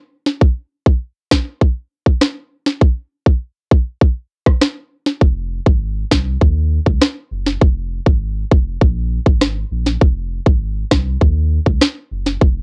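A hypnotic, bouncy dancehall excerpt opens with a tight, electronic drum kit of kick, rim click and sharp snare colored by cassette tape, up front in a dry home recording, before a deep, saturated sub bass with a thick triangle tone and fast attack joins at 5.2 seconds and sustains to the end.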